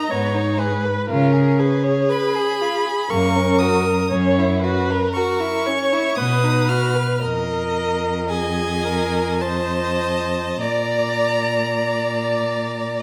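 A clear, close violin carries the melody high above the ensemble in this slow, elegiac movement for string quartet, a passage cut from a longer piece. Beneath it, a second violin sits distant in the mix with a smooth second line, while a rich viola plays close accompaniment and a cello holds the bass up front with a smooth top. All four players bow with vibrato and an even, solemn restraint, moving in a rubato 3/4 at around 50-61 BPM. The harmony drifts from Abm through Db7, Gb and Gb7 to B and Fm7, arriving on Bb at 10.6 seconds. A moderate recital hall reverb of 1.5 seconds surrounds the quartet and lends the sound a sense of space.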